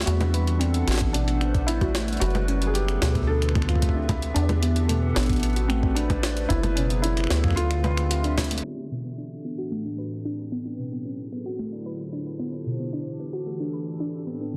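A warbly, lo-fi tape pad holds sustained chords from the start, joined at once by a harp-like synth pluck ringing out arpeggios through chorus, phaser and delay, a rubbery, resonant acid bass sitting up front, and a gritty, pitched-up jungle sampler kit of congas, finger snaps, hi-hat and a medium-tuned snare. This is an eerie, glitchy IDM piece at 112 BPM in 4/4 with a straight feel, circling through Em11, Am11, F#m11 and Dm11 in a dark, nostalgic haze. A soft, felt-muted upright piano carries an intimate, mellow melody with delay. A compressed, thumpy electronic kick enters at 1.0 seconds and drops out at 7.6 seconds, and a drum fill with a band accent closes the opening section. From 8.6 seconds the bass and drums fall away, leaving the pad and pluck under a filter sweep until the excerpt is cut off, all inside a dense, heavily limited master with light reverb and a low-pass filter.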